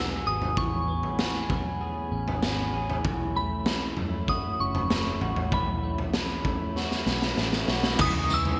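Dream pop at 97 BPM, ethereal and dreamy, with a soft FM synth bell carrying a high melody through chorus and delay over sustained chords from a pure, beating glass harmonica and chorused, delayed arpeggios on a slightly broken-up electric guitar. A round, foam-muted fingered bass sits in the background, while a lo-fi, gritty garage drum kit with a boomy kick and gated reverb comes in at 0.4 seconds, up front, and plays a fill from 6.8 seconds. The chords move from Emaj9 through Amaj9 and B9sus4 to C#m9 at 8.0 seconds, where a second, twangy guitar enters with tremolo, all in a bright 1980s-style digital production with moderate plate reverb.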